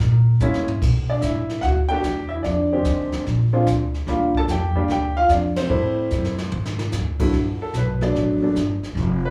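Heard live through a club's PA with a small room's ambience and moderate reverb, this relaxed, playful swinging jazz piano trio is cut from a longer piece. A clear, natural baby grand piano carries the melody up front with a slapback echo, over woody, thumpy pizzicato gut-string upright bass and a brush kit with dark cymbals and a boomy kick, moving through changes such as Bm7, Ebmaj9 and Ab(#11). The band hits an accent at 5.5 seconds, the drums play a fill at 6.1 seconds, and at 7.3 seconds the piano opens a solo over Gmaj9.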